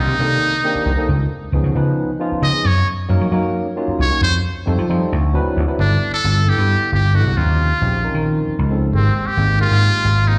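Heard as a live gig through the venue's PA, with recital hall reverb around it, this slick, bright jazz excerpt moves in a straight 7/8 at 268 BPM counted in eighths, tuned to A4 = 439 Hz. A brilliant, buzzy metal-muted trumpet with light vibrato sits up front and takes a solo over the first 5.8 seconds, its thin tone carried by slapback and tape echo, while a barky, clean tine electric piano played through a combo amp accompanies under lush chorus and slapback echo. Underneath, a punchy, amped vintage slap bass sits up front as the harmony travels from Cm9 and Db9 through F9 and D13 to G69 and Abmaj9.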